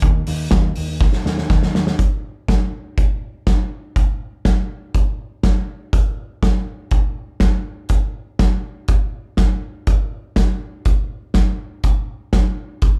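Dry, with little reverb, this sounds like a band playing live in one room, a short cut from a longer jangly indie pop piece at 122 BPM in a straight 4/4 with a nostalgic, youthful mood. A dark, round picked electric bass sits low around Eb2 and stops at 1.9 seconds, just as a drum fill runs from 1.0 to 2.0 seconds. From there the loose indie drum kit carries on alone until 12.9 seconds, up front with a punchy kick, a medium-tuned snare and hi-hat in a pumping studio room sound.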